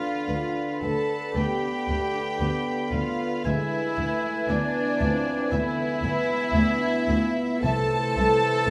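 Melancholic and yearning, this brief rubato fragment of a slow romantic orchestral movement sets a very quiet, dark violin section melody, entering at 0.3 seconds, over sul tasto strings, with a second violin section, a clear close oboe, a distant flute and a shadowy, very quiet clarinet on the second line, a mellow bassoon, a floating viola section and mellow French horn chords in the accompaniment, a ringing harp arpeggiating in the background, and cellos and double basses holding the low bass, all in a moderate recital-hall reverb as the harmony moves from Bdim/D through E7/D to Am/C.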